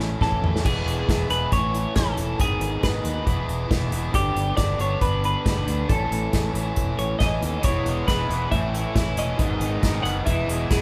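This short excerpt sounds like a band playing live together in one large studio, with a moderate reverb giving the room a natural, open feel. It's upbeat, jangly indie rock in a straight 4/4, kicking off with a drum fill before the band settles into a chord progression that cycles through A, E, G#m and G. A twelve-string electric guitar carries the melody with a clean, twangy, compressed chime, while a raw garage guitar drives the riff with picked, overdriven grit. Underneath, a fingered electric bass supplies a warm, direct low end, and an unplugged acoustic drum kit played with bundle sticks sits up front with a punchy kick, medium-tuned snare, hi-hat, toms and crash. At 7.6 seconds a second overdriven electric guitar joins in the background, thickening the riff through to the cut at 10.8 seconds.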